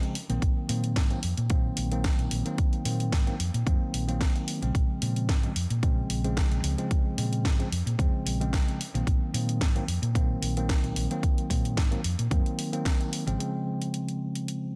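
Dry, dense and heavily limited, this sleek, sensual nu-disco fragment sets a punchy, layered electronic kick up front beside a house drum kit of cracking snare and warm hats, under a round, dark, amped hollow-body fingered bass, while a clean, up-front tine electric piano pumps with sidechain, low-pass filtering and digital delay through Ab7/Bb and Bbm7 chords before it moves onto Dbmaj7 at 13.4 seconds, where a filter sweep takes hold.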